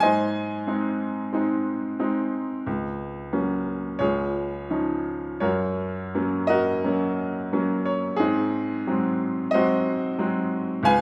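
A bright baby grand piano carries this lyrical classical solo, its brilliant, up-front tone set in a moderate recital hall reverb. The mood is sunny and warm, at about 89 BPM in 4/4, with a flexible rubato feel that lets the beats fall unevenly. The instrument is tuned slightly high, to A4 = 444 Hz, and ranges from C#2 up to G#5. The harmony moves from G# through F#/C# and C#add9 to F# at 5.4 seconds, then settles on G#7 at 8.2 seconds. Cut from a longer piece, this brief passage of about 11 seconds feels like an unhurried, open-hearted statement.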